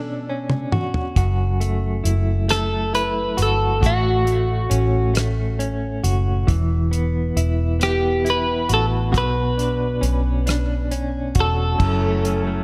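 This is a slow six-eight pop ballad in B minor, moving at 45 BPM in dotted quarters with a straight feel, dramatic and aching in mood, cut from a longer piece. A damped 70s drum kit enters at 0.5 seconds within a fill that runs to 1.2 seconds, and its dry sound, dark cymbals, tight kick, rim click and toms sit up front. A vintage muted fingered electric bass arrives at 1.2 seconds, round and punchy in a low register, while a direct-recorded clean electric guitar supplies picked, compressed accompaniment treated with tremolo. Over them a bright twelve-string electric guitar carries the melody between F#4 and B4, with digital delay and a forward placement. The harmony moves through Bmadd9, F#m7, A6 and Esus2 before returning to Bmadd9, and at 11.8 seconds a reedy, lightly overdriven tonewheel organ enters with key click and slow rotary speaker just as the chords turn to F#m7. Light reverb gives the whole a modest sense of space.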